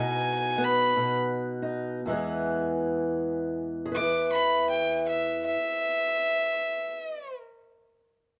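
A lightly swung 4/4 pulse at a slow 53-61 BPM carries this brief excerpt of acoustic country blues in E major, with the tempo easing back over the opening 2.1 seconds. The mood is laid-back yet rollicking, played as a small solo-or-duo performance. A bowed fiddle leads the melody, its tone clear and earthy with a light vibrato, and it takes a solo over the first section before the harmony moves from B to E at 2.1 seconds. Beneath it, a fingerpicked steel-string parlour guitar supplies the accompaniment, its sound dark and boxy, reaching from the low E2 up to E5. Both instruments sit up front in a moderate studio room with a short ambience, and the overall production leans dark and warm.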